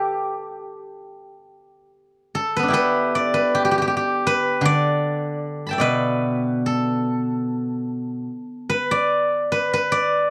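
A steel-string zither, played with fingerpicks, sounds silvery and ringing up front in this flowing, pastoral excerpt of Chinese traditional solo plucked strings, taken at a rubato 75 BPM in 2/4, spanning B2 to B5 in a dry, close 1970s-style studio sound with a brief opening section giving way at 1.2 seconds to the longer second part.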